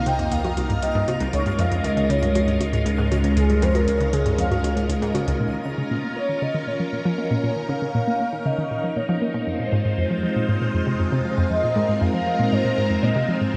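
Drenched in a wet spring reverb and heavy echo, with a darkened top end, this short excerpt of ambient, sequencer-driven space music feels mysterious and cosmic, moving at 118 BPM in a straight 4/4 in F minor. Up front, a bright, detuned analog pluck runs its riff through chorus, analog delay and a cassette-tape grain, while a swirling, vintage string machine holds sustained chords, colored by ensemble chorus, phaser and shimmer reverb. Above them an expressive synth lead sings a smooth, dark melody with vibrato, trailing analog delay and shimmer. In the opening section a round, deep analog bass with tube saturation anchors the low end, electronic hi-hats with a metallic edge and bongos tick through echoes, and a faint, twinkling granular texture sparkles in the background. At 5.4 s the bass, percussion and granular layer stop, leaving the pluck, strings and lead to carry the second section as the chords move from Bbm to Fm7 at 9.5 s.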